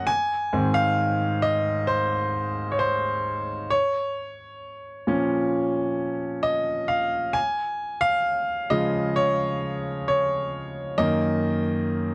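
In a straight 4/4 at 66 BPM, this hopeful, heartfelt pop piece in Db major is a 12.1-second fragment of a longer work, played entirely by a solo grand piano, clear, natural and up front, spanning Gb2 to Ab5 through chords of Ab, Bbm, Db and Gb6, with light reverb in a dry, close 1970s-style studio sound.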